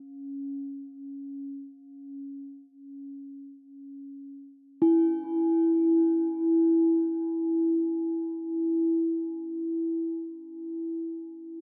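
A lone bronze singing bowl rings out from the first moment, struck with a felt mallet and sustaining around E4 in free time. This is calm, spacious world meditation music, tuned slightly above standard pitch with A4 at 441 Hz, and it plays as a short 11.6-second slice of a longer piece. The bowl's tone is mellow and metallic, with a slow beating shimmer in its ring and a soft, vintage, band-limited character. It sits up front and carries a tape echo that trails behind its ringing. Around it, a huge, wet ambient reverb with a 6.2-second decay fills the space, leaving the single instrument suspended in a vast, still room.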